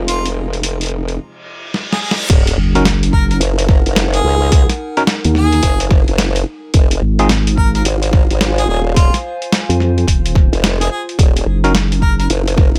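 A brief, lush string chord, bell-like electric piano stabs, a chorus-thickened formant-sweep wobble bass and a warbling, nostalgic lo-fi pad open this gritty, playful glitch hop excerpt at 108 BPM in Eb dorian with a 16th-note swing. A clear, roomy harmonica carries a jazz-style melody with scooped notes and light vibrato over a compressed, pitched-down boom bap kit. After a reverse cymbal and a drum fill, the drop lands at 2.3 seconds, where a punchy electronic kick comes up front, a sub drop sounds, and the chords move from Fm7 to Ebm7. A dark, nasal vowel-sweep wobble bass joins moments later, while the pumping, delayed electric piano stabs fall away at 7.3 seconds, save for one brief return near the end.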